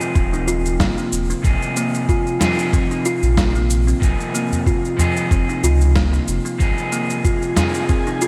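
A bright 1980s-style digital production in a lush hall carries this earthy, meditative organic downtempo excerpt at 93 BPM with a light 16th-note swing, where woody kalimba arpeggios with low-pass filtering and digital delay ring over a dark, slightly broken-up electric guitar with sidechain pumping, filter and delay, a round, sidechain-pumped sine sub bass, a gritty thumpy electronic kick, a gritty electronic shaker and snare drum in gated reverb, and a small, close udu from 2.4 s, while chords shift from Ab to Bb7 (omitting the third) and back before an airy, breathy, wind-like tuned noise texture drifts in the background at 7.3 s.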